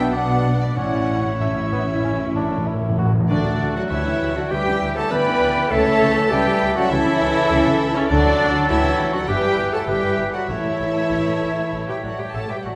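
In a rubato 4/4 at 93-102 BPM, this cheerful, spirited excerpt of a quick classical-period orchestral movement sets a dark, woody violin section on the melody over airy flute, clear clarinet, distant oboe and a second, lush violin section with portamento, while rich violas, bassoon and tight French horn chords fill the middle, intimate cellos and close double basses hold the bass, and timpani with medium mallets add a fill from 0.8 to 3.3 seconds, all in a reverberant concert hall.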